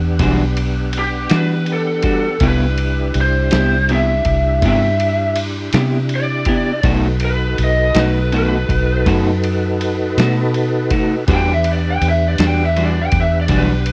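A dry, close recording in a 1970s studio style carries this smoky, mournful slow blues in E minor, moving at 54 BPM in a straight 12/8 through Em9, Cmaj7 and B7. A round, punchy muted electric bass sits up front beneath a muffled, pitched-down sampler-style drum kit with thumpy kick, snare and ride, while a tonewheel organ holds smooth chords through a slow rotary speaker with chorus vibrato and key click. A bright, twangy guitar with tremolo plays accompaniment, and from 1.0 s an overdriven lead guitar through a small cranked amp carries the lo-fi melody.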